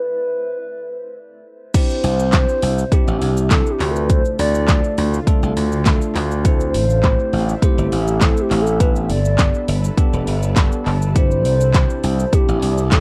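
Worn, warbling cassette tape with drifting pitch and light reverb colours this euphoric, summery dance-pop excerpt, which opens with a hollow, woody clarinet-like synth lead carrying the melody alone through chorus and tape echo. At 1.7 seconds a punchy, up-front electronic drum kit arrives with a fat snare, metallic hats, handclaps, shaker and crash, joined by a bell-like tine electric piano that pumps with sidechain compression and plays a short fill at 10.3 seconds. A bright, amped slap bass, a very quiet shimmering pad with ethereal granular sustain, and a faint, distant group handclap in a large room fill out the Cadd9, Dm, Am and Gadd9 progression.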